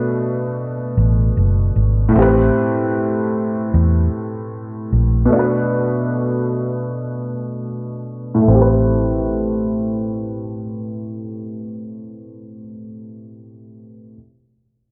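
Lo-fi hip hop at 76 BPM in A dorian, hazy and nostalgic, with a swung sixteenth-note feel and chords moving between Bm7 and Am9. A woody, slightly detuned upright piano plays the accompaniment up front with plate reverb from the start until 14.2 seconds, while a dark, round, foam-muted electric bass enters at 1.0 seconds and sits just as close. The fragment is coloured by worn, warbling cassette tape with pitch drift, a low-pass filter and a moderate studio reverb, with a filter sweep over the opening 8.5 seconds and a break from 5.3 seconds.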